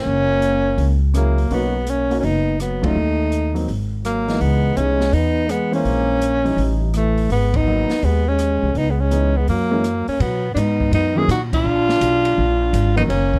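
A dark, warm production with light reverb frames this smoky, swinging excerpt of small-group jazz, cut from a longer piece and moving at a brisk 166 BPM in 4/4 with a firm swing on the eighth notes. Up front, a breathy tenor saxophone carries the melody with light vibrato, scooped notes and a smooth top, while a mellow, breathy trombone sits in the background on a second line with its own scoops. The upright bass is plucked and growly, woody and close, holding down the low end beneath chords that move from F#7 to Bmaj7 and later through C#m9 and A7#11 before a turn to A#7b9. A natural-sounding baby grand piano adds accompaniment with short sustain from 1.1 seconds, and an acoustic drum kit in a studio room, with dark cymbals, a medium-tuned snare and a boomy kick, sits low in the mix. The whole band hits accents at 2.8, 7.5 and 11.5 seconds, and a new section opens on Bmaj7 at 10.2 seconds.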